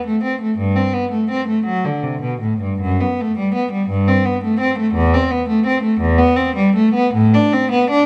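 A rich, reedy cello plays alone in this serene, dance-like baroque-style suite movement, its gut-string tone carrying light vibrato in a period style as a single bowed player sits up front, ranging from E2 to D4. The pulse moves at 55 BPM in dotted quarters in 6/8, with uneven beats and rubato giving the line an unhurried feel. A moderate recital-hall reverb surrounds the instrument across this short 8.1-second fragment cut from a longer piece.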